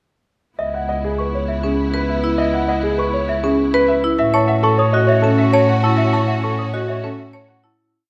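In a straight three-four pulse, this short, complete minimalist classical piece feels urgent and hypnotic, with a natural-toned grand piano repeating a short melodic cell over a warm, bowed double bass playing long notes up front and a rich, lush string section holding vibrato chords. A delicate, bell-like celesta circles in sweet arpeggios in the background, and from 1.6 seconds a marimba struck with hard mallets adds bright, percussive arpeggiated cells. The harmony moves from C#m9 to A6 at 4.2 seconds within a moderate scoring-stage reverb before everything fades out from 6.0 seconds.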